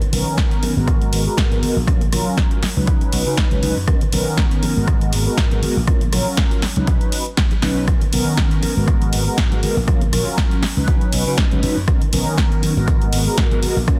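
Densely limited with light reverb, this funky, groovy slice of filtered disco house sets a bright, punchy slap bass and round, detuned sawtooth synth brass, dark and up front with chorus, phaser and ring modulation, both low-pass filtered and pumping with the sidechain, over a layered house drum kit with tape-colored pumping hats, very quiet close and dry congas and tambourine, and an analog electronic kick that joins at 0.4 seconds, while a filter sweep runs throughout, a drum fill lands at 7.6 seconds and extended chords cycle over a swung groove.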